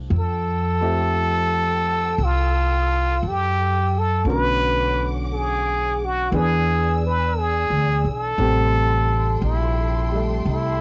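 Intimate and romantic, this short swung jazz ballad, cut from a longer piece and captured dry on a home cassette with a dull, muffled top, sets a clear, plunger-muted trumpet melody with wah-wah and light vibrato up front over a woody pizzicato upright bass, a polished grand piano accompaniment and a lush, bowed studio string section holding smooth sustained chords as the harmony moves from Fmaj9 through Bm9 and E7 to Am7.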